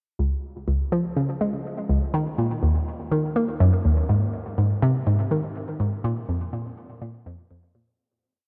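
A dreamy, reverb-soaked mix with a cassette-tape tint and a huge ambient space that rings for about 8.4 seconds frames this brief, expansive and luminous ambient piece at 123 BPM in straight 4/4, tuned to A4 = 438 Hz. A hollow, bouncy square-wave pluck plays solo and up front from 0.2 seconds, repeating a 16-step sequence between Db2 and Bb3. Its fast attack and short decay carry a noise layer and filter pluck, shaded by chorus, phaser, cassette tape and tape echo. The piece fades out from 5.4 seconds until it closes at 8.0 seconds.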